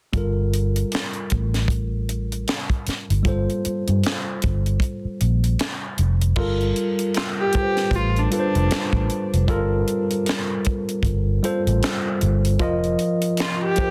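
R&B with a neo-soul lean, this short excerpt sits in a smooth, late-night mood over a swung sixteenth-note groove in 4/4. A worn, slightly out-of-tune tine electric piano carries the accompaniment from the start, clean and direct with a plate reverb, while a vintage muted fingered electric bass sits up front with a dark, round, foam-muted tone through an amp. A tight funk drum kit plays dry and acoustic, with bright cymbals, a high-tuned snare, a tight kick, hi-hat, handclaps and crash. The harmony rests on a Gm9 chord, moving to F7sus4 near the close, and the bass drops out at 12.9 seconds. At 7.2 seconds, as the second section gets under way, a single bowed viola enters with the melody, nasal and boxy yet smooth and even, with vibrato, plate reverb and tape echo. The mix is dense and heavily limited, with only a light reverb.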